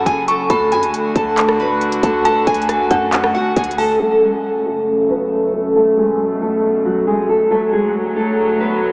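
A half-time trap groove at 137 BPM in 4/4 drives this brooding, hard-hitting hip hop excerpt in F# minor. Its electronic kit of hard-clipped kick, crisp hi-hat, handclaps and rim click is dusted with vintage 12-bit sampler grit. Beneath it, a punchy 808-style bass with a sine body and noise layer strikes heavy with a fast attack, then decays. High above, an eerie, inharmonic FM bell carries a second line, mellowed by chorus and tape echo. Up front, a bright, fingerpicked nylon-string guitar plays the classical-toned melody through lush chorus, a low-pass filter and tape echo, while a bowed studio string section holds sustained chords with a reedy, gut-string period colour and smooth top as the harmony moves from D to F#m and back to D. By 4.0 seconds the drums, bass and bell have dropped away, leaving guitar and strings under a filter sweep until 8.9 seconds, all in a dreamy mix soaked in cathedral reverb with a small-speaker sound.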